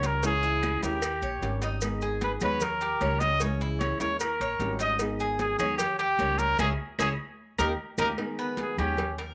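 A vintage-toned trumpet with vibrato sits up front, carrying the melody through this danceable, warm Cuban son and guajira cut at 151 BPM in G# harmonic minor, cycling C#m, D#7 and G#m. Beneath it, a dark, boxy, thumb-plucked flamenco guitar with finger squeak and a metallic, double-strung Cuban tres picking arpeggios ride over a woody, thumpy pizzicato upright bass on gut strings. Background congas with a thick skin, a tight, saturated cowbell, distant claves and grainy, close maracas drive the groove into a band accent at 6.6 s and a drum fill at 7.4 s before the trumpet solo at 8.2 s, all in moderate spring reverb.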